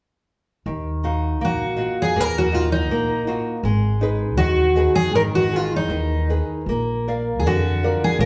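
A mournful, longing fado-style ballad cut from a longer piece, moving at 80 BPM in 2/4 with a rubato feel in Eb harmonic minor, where a small, fingerpicked nylon-string guitar and a woody pizzicato upright bass open at 0.7 s over Ebmadd9, Abm and Bb chords before a shimmering, octave-doubled twelve-string acoustic guitar enters up front at 1.4 s to carry the melody, the band playing live together in one room under a wet, large studio reverb.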